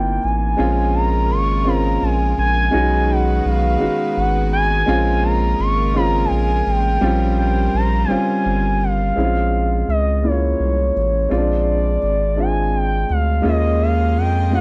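A dry, close 1970s-style studio sound frames this sultry, late-night R&B fragment in Bb dorian at 56 BPM in 6/8, where a smooth, gliding portamento lead with chorus, phaser and slapback echo sings up front over an intimate concert grand piano with audible action noise, a deep, nasal analog bass, and earthy bowed chamber strings that hold sustained chords until 9.1 seconds and return at 13.4 seconds on an Eb9sus4.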